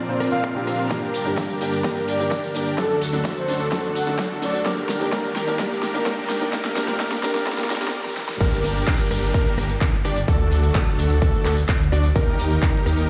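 Powerful and emotional, this festival progressive house passage in G minor drives at 128 BPM, building for its first 8.4 seconds over a Bbadd9, Gm, D, Eb progression as a huge, thick supersaw riff, a punchy plucky lead's arpeggios, a lush, warbling pad and a soft, felt-muted upright piano with audible action noise all pump against the sidechain, the supersaw, lead and piano trailing into dub echo. A breathy, flute-like synth lead sings a brief melody from 2.1 to 4.7 seconds, while an overdriven dance kit with a huge snare, claps, tambourine and crash, plus very quiet risers and a swell, push through drum fills into a short break. The drop lands at 8.4 seconds, when a menacing, beating detuned saw bass joins the up-front overdriven kick, all of it heard through a big sound system in a bare stone room.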